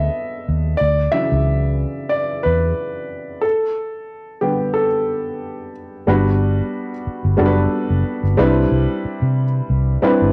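Lush 1970s-style soul at 91 BPM in 4/4 with a light sixteenth-note swing, romantic and warm in mood, cut from a longer piece. An intimate baby grand piano, with audible action noise and short sustain, carries the accompaniment through cassette tape colouring and plate reverb, taking a solo over A7sus4 and Dmaj9 with a break from 3.4 s. Up front beneath it sits a dark, round, foam-muted electric bass, and at 6.1 s the harmony moves to Gmaj7 and Cmaj9, the home cassette recording framed by a small, wet room.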